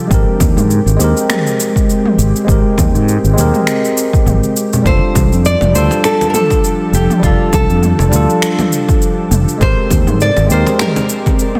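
A punchy, overdriven electronic kick and a layered deep house kit of cabasa, finger snaps and toms with a softly clipped snare swing at 101 BPM in 4/4, joined by low-tuned congas in the background, while a bright, up-front fretless bass, a clean tine electric piano through a combo amp with delay and a low-pass filter, and a mellow, detuned, airy pad with ensemble chorus support a small fingerpicked nylon-string guitar with tape echo that enters at 4.9 s, moving over relaxed, warm Abmaj9 and F69 chords in this sunset chillout excerpt, set in a lush hall reverb and a dense, heavily limited modern master.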